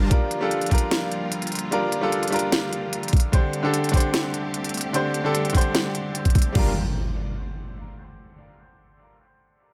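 A lush, emotional future bass piece in G minor at 149 BPM, with a half-time 4/4 feel, opens on bright, intense bowed strings holding sustained Gm7 and D7sus4 chords under sidechain pumping, while a huge, detuned supersaw riff and a deep, boomy 808 bass with tube saturation flash by only at the very start and end of the phrase. A brilliant grand piano sits up front with dub echo and pumping, joined by a knocking, tape-warm electronic kick and a trap kit with sharp snare, crisp hats and crash cymbal. When the drums stop at 6.6 seconds, an up-front electronic impact rings out in light reverb until 8.2 seconds.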